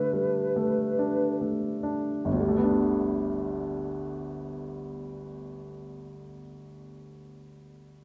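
A slow, rubato pulse at 36 BPM in 4/4 opens this impressionist classical fragment, which holds back further over its first 2.3 seconds before the music moves into a new section. In G major and dreamy, pastoral in mood, the duo begins on a Gadd9 chord. A hollow, pure concert flute carries the melody on B4 with vibrato and tongued notes, heard close and intimate, before falling silent at 1.4 seconds. The baby grand piano supplies accompaniment across the full 8.0 seconds, ranging from G1 to D4 with a clear, polished, up-front presence. A wet scoring stage reverb with a 2.1-second decay surrounds the pair, lending the cut from a longer piece a spacious glow.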